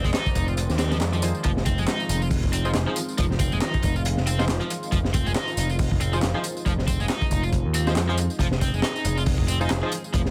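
An overdriven picked electric bass sits up front in this funky, energetic breakbeat excerpt at 138 BPM in F dorian, riding a single Fm7 chord alongside a crunchy drum kit with a punchy kick, high-tuned snare and gritty, rolled-off top, plus faint tape-warm electronic tambourine and handclaps. A bright cranked stack guitar riff runs through tremolo and tape echo, while a filtered dub chord stab with a muted, detuned pluck enters at 1.2 s and drops out at 9.9 s. Behind them, a swirling phased analog pad holds sustained chords in the background with chorus, 12-bit sampler grit and sidechain pumping, all set in light reverb.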